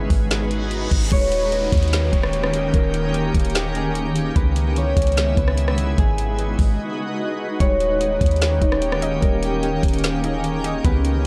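A shimmering, granular ambient pad sits up front with octave-up shimmer and ring modulation, holding sustained chords over a fingerpicked concert harp melody that rings through analog delay in this ethereal, spacious cloud-rap hip hop excerpt at 148 BPM in a half-time feel. A smooth R&B drum kit with a knocking kick, woody snare and metallic hats drives the groove alongside a deep, round 808-style bass, while a reverse cymbal and downlifter drift in the background from 0.5 seconds and a break arrives at 6.8 seconds. At 7.6 seconds a detuned, lo-fi pluck joins with mellow chorused arpeggios, all within a dry, gritty recording that moves through G#m7, D#7 and C#m7.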